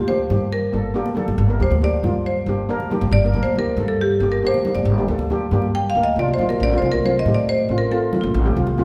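A marimba played with hard mallets opens this intense, driving calypso fragment alongside a woody pizzicato upright bass, taking a percussive, rosewood-toned solo over a brisk 138 BPM in G minor that moves from Gm to F/A at 6.6 seconds. A mellow double-seconds steel pan shimmers up front in accompaniment, struck with soft rubber sticks, while high-tuned congas ring softly in the background. The whole ensemble sits in a reverberant recital-hall space with a long, church-like decay.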